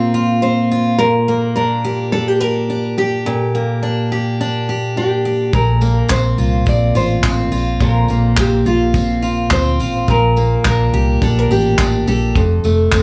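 A lightly swung sixteenth-note feel in 4/4 carries this short acoustic pop excerpt, heartfelt and sunny in mood. A picked steel-string dreadnought guitar sits up front with audible finger squeak, accompanying a full-bodied, fingerpicked nylon-string guitar that carries the melody through a tape echo. At 5.5 seconds the rhythm section enters: a dark, round, foam-muted electric bass with a punchy, amped tone, a cloth-damped drum kit with a tight, thuddy kick and handclaps, and a jingly tambourine set distant in the background. The drums sit up front with a rolled-off top. The harmony moves between Bbsus2, Gm/Bb and Bbadd9 before landing on F, and light reverb with small room ambience frames the sound.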